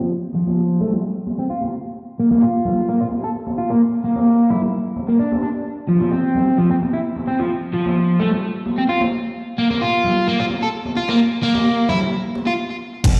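A crunchy, double-tracked overdriven guitar riff sits up front under a filter sweep and delay, moving through Bb5 and F5 over ringing, high-tuned congas heard from a distance in this funky, energetic 130 BPM breakbeat cut, until a stop at 12.6 seconds gives way at 13.0 seconds to a brief hit of gritty, compressed sampler-style drums with a thumpy kick, crash and ride, a bright picked electric bass note and a barely audible analog electronic hi-hat, set in a lush hall reverb.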